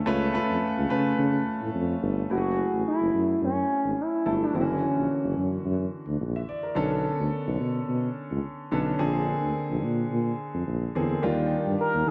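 A clear concert grand piano with subtle chorus opens this nocturnal, slick 1980s jazz-funk pop excerpt at 0.0 s, joined almost at once by a warm, jazz-style tuba bass with light vibrato, moving at 108 BPM in 4/4 with lightly swung sixteenths through lush chords such as F#m9, Bm9 and D#maj9, while a smooth, warbling, vintage-toned portamento lead with chorus and delay sings up front from 2.3 to 5.6 s before reappearing briefly at the very end, all soaked in a dreamy plate reverb.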